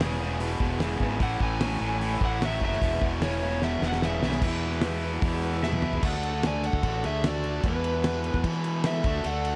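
Classic rock with a sunny, confident stride, this short cut from a longer piece opens on an overdriven slide guitar soloing with tape echo over a fuzzy, up-front fingered bass and a damped 70s drum kit with a fat snare and dark cymbals, with fills at 3.6 and 5.6 seconds. Beneath them, a tight distorted guitar riff and a bright overdriven riff guitar (which stops at 6.0 seconds) are joined by a very quiet, woody twelve-string acoustic shimmering in octaves and a softly sustained tonewheel organ with key click and slow rotary vibrato. A background fuzz lead guitar adds a second line from 5.6 seconds as the harmony shifts between E, A and D in a small, lightly reverberant room.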